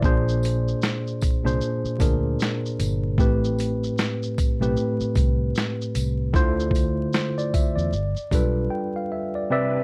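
A worn, slightly out-of-tune electric piano opens this nostalgic, cosy lo-fi hip hop excerpt, sitting up front and mellowed by a low-pass filter. From the start it is joined by a dark, round, foam-muted fingered bass and a gritty, pitched-down boom bap kit with a thumpy kick, a medium-tuned snare, hi-hat and shaker. A jingly tambourine enters in the background at 0.4 s, and the swung groove moves through Bb9, Am9, Dm7 and G7 under a bed of vinyl crackle and light reverb. The bass stops at 8.7 s as the groove breaks, and the electric piano carries on alone. At 9.5 s a bright, swirling string machine with a slow attack, ensemble chorus and phaser holds sustained chords in the background.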